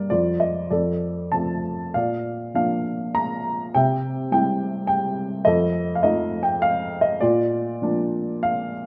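A moderate recital-hall reverb surrounds this relaxed classical excerpt of lyrical solo piano in Bb major and 3/4, where a dark, woody, slightly detuned upright sits up front, playing with rubato at roughly 93-107 BPM through a brief harmonic arc from F to Bb, C and F7 before settling back on Bb by 7.2 seconds.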